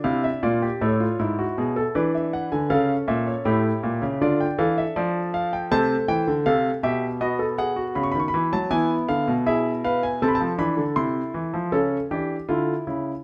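Set in a straight 4/4 pulse, this stately fragment of a baroque-style, four-voice fugue unfolds at an unhurried, elegant pace on a solo grand piano. The concert grand sits up front with an intimate, polished tone, a deep bass and short sustain, and the mechanical action noise of the instrument is clearly audible. Its voices range from G#2 up to C#6, woven through a minor-key progression that moves from Dm through E7/G#, A7, B7 and E before settling on Am/C. A moderate stone-room reverb gives the piano a sense of space around its close, detailed sound. At 11.7 seconds the music turns to a new section on an A7/C# chord, and the passage is cut off shortly after, at 13.1 seconds.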